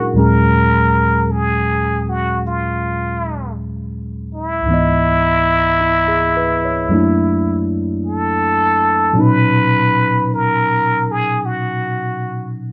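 Swung eighths at a slow 53 BPM in 4/4 carry this melancholic, wistful jazz ballad excerpt in Eb minor, where a raspy, growling plunger-muted trumpet with light vibrato sings the melody over a worn, slightly out-of-tune tine electric piano moving through Ebm11, Dbm7, Gb7alt and Bmaj7, all wrapped in a dark production with light reverb.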